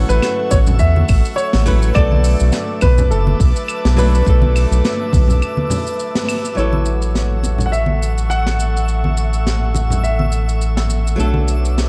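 A vintage-toned concert grand piano carries the melody over fingerpicked flamenco guitar, both with tape echo, while a breathy chorused pad, a round, up-front analog bass and a twinkling granular shimmer open this smooth, sunny chillout piece, soon joined by a brushed jazz kit with claves and shaker, ringing hand-played congas and a deep overdriven electronic kick that drops out at 5.3 seconds before a short break and a band accent at 6.1 seconds lead into a new section in a dark, warm small-room mix.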